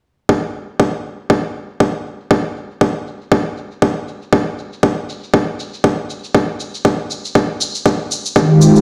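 A deep, layered, overdriven electronic kick drives this spiritual, driving afro house excerpt at 119 BPM, sitting up front from 0.3 seconds with a 16th-note swing. A soft, filtered shaker runs beneath it. At 8.4 seconds, just before the kick stops at 8.5 seconds, a smooth, detuned sawtooth analog pad enters with sustained chords, lush chorus and sidechain pumping, all heard on a big sound system in a bare stone room.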